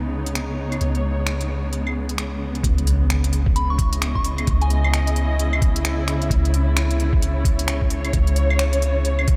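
A swung 131 BPM future garage pulse in C# minor carries this melancholic, nocturnal excerpt, where muted, veiled strings hold sidechain-pumped chords over a round, deep 808-style bass, overdriven claves, snaps and smooth hats enter at 0.3 s, a muffled, thumpy kick and a very quiet sub drop land at 2.6 s as the harmony turns to C#m7, and a pure FM bell with chorus and analog delay briefly sings from 3.6 s, all bathed in a dreamy cathedral reverb.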